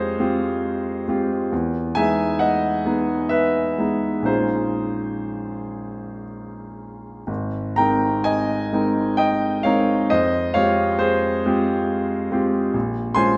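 A clear grand piano opens on an Fmadd9 chord and carries this serene, luminous impressionist solo in a rubato 3/4, its smooth, vintage tone held up front with long sustain across a range from Ab1 to C6, drifting through lush extended harmonies such as Emaj7 and Bbm11 before returning to Fmadd9 near 10.1 seconds, all bathed in a wet recital-hall reverb in this short passage cut from a longer piece.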